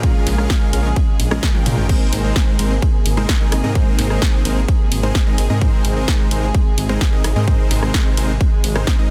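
Triumphant and uplifting, this short cut from a longer festival progressive house track drives forward in a straight 4/4 feel, moving from a Bbm7 chord to Abadd9 at 1.9 seconds. A punchy, layered electronic kick sits up front, joined by a big-room dance kit whose punchy snare, hi-hat, ride, rim clicks, crashes and toms carry a brief drum fill between 1.4 and 1.9 seconds. The riff comes from a huge, thick supersaw, airy yet compressed, with a noise layer, a sub octave and a touch of vibrato, all pumping against the kick and trailing dub echo. Beneath it, a detuned saw bass sits thick with a beating, menacing edge, also pumping with the sidechain. A dark chamber string section holds sustained chords with soft, intimate bowing and light vibrato, roughened by vintage 12-bit sampler grit, all set in digital ambience and a dense, heavily limited modern master.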